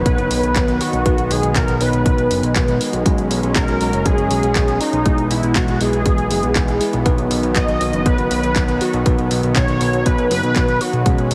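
A bold, detuned sawtooth unison lead carries the melody through this sunny, danceable italo disco excerpt, its vibrato-tinged tone spread by ensemble chorus, delay and shimmer reverb. Underneath, a fat analog bass with tube saturation and a wave-folded filter sweep anchors the 120 BPM straight 4/4 groove in B major, tuned to A4 = 436 Hz. A lush, nasal pad sustains soft-attack chords in the background through a progression of B, F#sus2, E/B and back to B, while a bell-like tine electric piano adds clean stabs that sound as if heard through built-in speakers. A punchy, tape-tinged electronic kick drives the beat from 0.1 seconds alongside a house drum kit of handclaps and hi-hat, both re-recorded in a small room, and a barely audible electronic impact marks the opening until 1.1 seconds. The whole mix has light reverb and a heavily compressed, radio-like sound.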